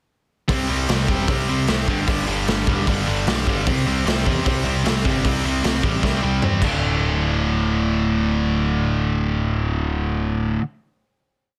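Rowdy and upbeat, this short punk rock piece charges along at 153 BPM with a bright, up-front distorted electric guitar driving eighth-note power chords over a growling, overdriven picked bass, while a raw garage drum kit with a boomy kick and dark cymbals pounds out a fast groove, hits a fill at 6.0 seconds and stops at 6.7 seconds, leaving guitar and bass to ring out a final hit until 10.6 seconds in a dense, dry, heavily limited mix.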